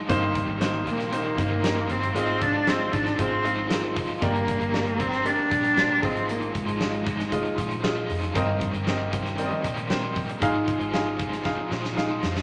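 This bittersweet, driving piano-driven pop excerpt in C minor opens with a brilliant, woody upright piano, an overdriven, double-tracked electric guitar riff with tremolo, and a dark, round, foam-muted fingered bass, all sounding at once. A huge arena drum kit joins almost immediately, its punchy kick and medium-tuned snare ringing with a hall-like acoustic character under a steady 116 BPM in straight 4/4. From 0.9 s to 7.5 s a single bowed cello carries the melody up front, smooth and even with a rich vibrato. The harmony moves between Cm7/G and Fm7/Ab, with a turn to Gm as the second section begins. The piano's short sustain keeps its chords crisp beside the compressed, picked guitar, while a large, wet studio reverb surrounds the mix. A drum fill at 11.5 s closes the passage.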